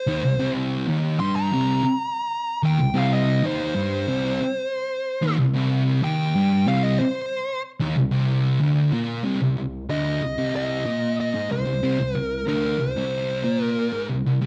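A dark, compressed fuzz lead guitar with slapback echo takes a distorted, picked solo through the first 9.2 seconds of this heavy, brooding metal excerpt, riding high over a thick, double-tracked fuzz guitar riff that sits up front, all bathed in a large studio reverb for a dark, warm production.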